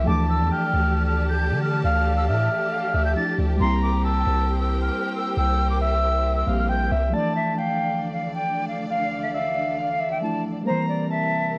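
Over a half-time hip hop groove at 136 BPM in D minor, this menacing, eerie excerpt sets an airy jazz flute melody with vibrato above a breathy, flute-like synth lead carrying a second line with chorus and delay, while muted felt-like synth keys and a lush bowed string section hold the Dmadd9 and C7 harmony. A deep, sine-toned 808-style bass sits up front until it drops out at 7.1 seconds. The whole recording carries a worn cassette character, with vinyl crackle, warbling pitch drift and a small, lightly reverberant room.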